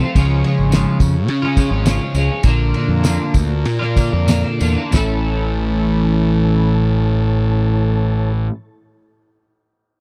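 A dry, close 1970s-style small-room recording carries this dark, hypnotic psychedelic rock fragment in straight 4/4 at 91-107 BPM, slowing down from 0.2 to 4.9 seconds, where a bright, clean twelve-string electric guitar riff with phaser and double-tracking sits up front beside a growly fuzz-overdriven fingered bass, while a soft, flute-like tonewheel organ with key click holds sustained chords through a slow rotary speaker, a jingly tambourine shimmers in the background, and a cloth-damped, thuddy drum kit with a fat snare, tight kick and dark cymbals drops out at 5.1 seconds as the harmony moves from C# through Bb to A.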